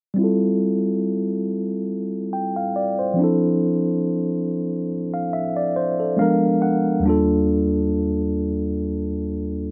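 Romantic and dreamy, this short R&B passage drifts along at 70 BPM in 4/4 with a gentle sixteenth-note swing, set in F major. A mellow tine electric piano carries the whole accompaniment from 0.1 s, sitting up front with a clean, warm tone heard through built-in speakers and shaded by a low-pass filter. A filter sweep runs across the electric piano for the length of the passage, and a brief fill from 5.8 s to 7.0 s adds a touch of movement. The harmony moves from Fmaj9 to Dm7, then through Bb7b9 before settling on a lush Ebmaj9#11 at 7.0 s. Light reverb gives the sound a soft sense of space, and the clip is cut from a longer piece.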